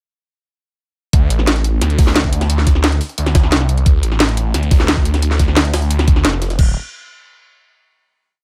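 A straight 4/4 pulse at 176 BPM drives this dark, technical drum and bass piece in D minor, where a knocking broken-beat kick, a tight up-front kit with cracking snare, metallic hats and crash, and a very quiet, gritty, pitched-up looped breakbeat with edits all crash in together at 1.1 seconds. Over them, a thick, swirling detuned saw bass, saturated with phaser and overdrive and pumping with sidechain compression, barks chopped phrases from D1 to D2, giving the mechanical, aggressive drop its weight. The drop runs to 6.6 seconds, and a final note carries the short piece to its close at 8.0 seconds, all set in a digital ambience.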